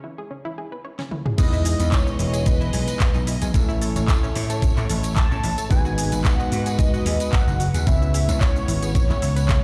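A lightly swung 111 BPM groove in E major drives this sunny, groovy nu-disco clip: a round, chorused analog pluck arpeggiates alone from 0.0 seconds, a layered pop kit with a fat snare and metallic hats fills in at 1.0, and at 1.4 seconds the drop lands with a thumpy, up-front electronic kick, a warm, up-front vintage slap bass, a barky, gritty overdriven tine electric piano, lush bowed violins in the background, a distant tambourine, and a thick, detuned unison lead with cassette-tape color and analog delay carrying the melody over chords moving from C#m through Emaj7, A, G#m7 and C#m7, all in a fairly dry mix.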